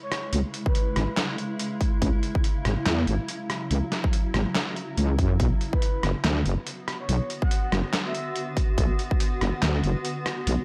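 A swung, half-time groove in 4/4 drives this dark, meditative slice of deep dubstep, cut from a longer piece. A sampler-style trip hop kit of handclaps, hi-hat, rim click and a muffled, pitched-down snare sits up front with a tape-warm, compressed character, joined by a punchy, overdriven electronic kick that drops out at 9.2 seconds. Beneath it, a heavy wobble bass built from detuned sawtooth and sine layers carries chorus and transformer saturation, loud and forward in the mix. A cloudy, evolving granular pad holds sustained chords from the first moment, blurred by its own reverb and roughened by vintage 12-bit sampler grit as the harmony moves from C#m to Bm. In the background, a soft, breathy flute-like lead with vibrato, chorus and dub echo sounds briefly at the start and returns at 5.7 seconds. The overall recording is dry and gritty, with little room ambience beyond the pad's reverb.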